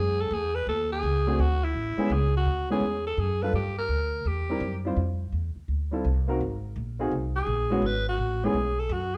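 Heard from further back in a large, wet-sounding studio, this brief swinging, playful cut of small-group swing and bop jazz moves at 168 BPM as a raspy, growling alto saxophone with scooped notes and vibrato carries the melody, pausing at 4.9 seconds and returning at 7.4, over warm baby grand piano accompaniment that stops at 8.6 seconds and a woody pizzicato upright bass.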